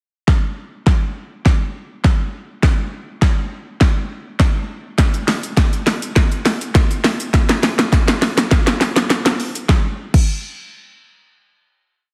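This short, complete pop piece opens at 0.3 seconds with a deep house drum kit alone, confident and driving in a straight 4/4 feel. The electronic, layered kit sits up front, with a deep kick, a fat snare, warm hi-hats, a shaker and a crash cymbal carrying a four-on-the-floor dance-pop beat. Re-recorded in a small room, the polished drums form a build-up that is played as one long drum fill until 9.7 seconds. A final hit follows, with the drums stopping at 10.3 seconds. A moderate echo-chamber reverb and a heavily compressed, radio-style sound give the recording a dense character.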